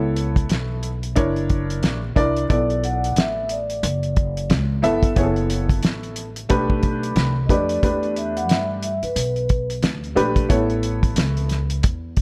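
A vibraphone played with soft mallets and the motor off carries the melody from 2.5 to 9.7 seconds, its ringing, metallic tone softened and trailed by a slapback echo in this relaxed, cool jazz-hop clip, cut from a longer piece, at 90 BPM with a swung 16th-note feel. Underneath, a dark, worn grand piano with audible action noise sits up front in a boxy, intimate space, while a woody, thumpy pizzicato upright bass anchors the low end. A cloth-damped, thuddy drum kit with a fat snare, tight kick and rolled-off top rounds out the dark, warm production, set in a small room with light reverb.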